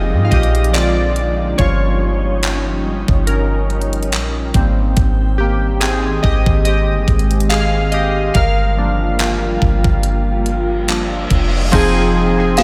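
A slow, late-night contemporary R&B excerpt at 71 BPM with a gentle swing opens on up-front, detuned analog keys carrying the lead, ringing over a glassy, ethereal FM pad and a deep, round 808-style bass. From 0.3 seconds a gated 80s drum machine adds a thumpy kick, an overdriven gated snare, handclaps, hi-hat and crash. Meanwhile a very quiet downlifter sinks beneath the mix from the very start, and a reverse cymbal swells in at 10.5 seconds. Moving through Fm7, Bb7, Eb9/G, Abmaj7 and Gm7 in a dreamy, reverb-soaked cathedral space, it closes on a single warbling, inharmonic synth chime at 12.6 seconds, full of longing.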